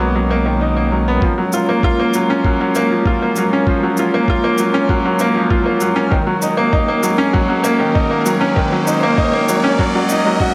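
Piano and strings electronica at 98 BPM in F# major, hopeful and luminous, cut from a longer piece: a bright, slightly detuned upright piano plays a woody riff up front with digital delay, over a dark, bowed string quartet holding sustained chords in the background and a round sine sub bass beneath, with the strings and bass pumping from sidechain. A muffled, thumpy electronic kick enters at 1.2 s to begin a build-up, joined by a tape-warm shaker, and an electronic riser arrives in the background at 6.3 s as the chords move from Bmaj7 through F#maj7 to D#m7. A moderate concert hall reverb gives the sound a spacious digital ambience.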